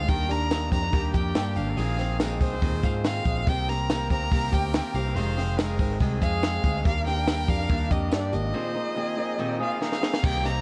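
A close, smooth violin carries the melody with even vibrato, its lines trailing off into dub echo over this nostalgic, bright slice of jangly indie pop at 142 BPM in Eb major. Underneath, a fingerpicked steel-string acoustic guitar lays down the accompaniment while an electric guitar played through a small old amp, slightly broken-up and lo-fi, spins arpeggios, both also soaked in echo. A brilliant, punchy trumpet sits in the background with a second line, while a foam-muted vintage electric bass stays round and up front. A compact cocktail drum kit with a high-tuned snare, punchy kick and dark cymbals carries a gritty 12-bit sampler edge, and a jingly tambourine sounds very quiet and distant. The chords move from Ebmaj7 through Bb9sus4, Cm7 and Fm7 before a break at 8.5 seconds ends in a drum fill at 9.8 seconds, all heard through an echo-heavy small room with a cassette tape tint.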